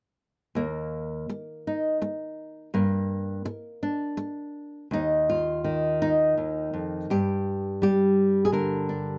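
Folk fingerstyle piece for solo nylon-string guitar, nostalgic and peaceful, moving in an unhurried, rubato triple metre. The fingerpicked guitar has a classical, warm tone and sits up front, playing alone from 0.6 to 9.2 seconds across a brief passage cut from a longer work, its harmony shifting toward G minor and an Ebsus2 colour. The dry, close sound of a 1970s-style studio keeps every note intimate and near.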